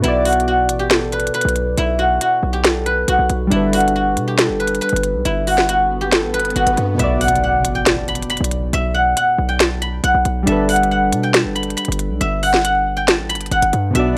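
Brooding and melancholic, this excerpt of half-time trap hip hop at 138 BPM in B minor sets a silvery, ringing guzheng melody played with fingerpicks up front over warbling lo-fi synth keys with chorus and a punchy, heavy 808-style bass, while an electronic trap kit drives it with a sharp snare, crisp hats and finger snaps. A very quiet electronic swell rises from 5.7 seconds into an impact at 7.0 seconds as the Bm to Gadd9 progression repeats, and a veiled, muted string section with vibrato slips in softly in the background only at 13.9 seconds. The sound is dry and gritty, with a digital ambience.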